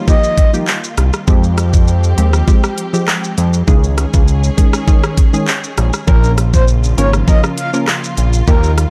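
A straight 100 BPM dancehall groove in 4/4 drives this hypnotic, tough excerpt, with a knocking, up-front electronic drum kit of kick, crisp hi-hat, handclaps, rim click and shaker, a fat, saturated analog bass entering at 1.0 seconds, crisp wavetable chord stabs and a soft, bowed string section both pumping with sidechain under chords moving from Ebadd9 to Bbm, and a breathy, flute-like synth lead with chorus and vibrato appearing briefly at the start and again from 6.1 seconds, all in a dark, dry production.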